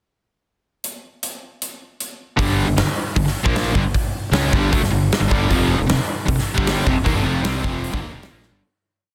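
A big acoustic rock kit sits up front and opens this short, menacing hard rock piece alone at 0.8 seconds, with hi-hat, a punchy kick and a medium-tuned snare carrying soft clipping, all set in an airy, polished big-room sound. At 2.4 seconds the full band crashes in on a heavy power-chord riff in G minor at 154 BPM in a straight 4/4, moving from G minor to F5. Two picked, overdriven electric guitars share the riff: a bright cranked stack guitar and a warmer, biting one tucked in the background. A growly, fuzzed, overdriven fingered bass drives eighth notes underneath, doubling the guitar riff with a punchy, direct-and-amped edge. The track begins to fade at 7.1 seconds, and a drum fill lands just before the end, all within a small room ambience and a dense, heavily limited modern master.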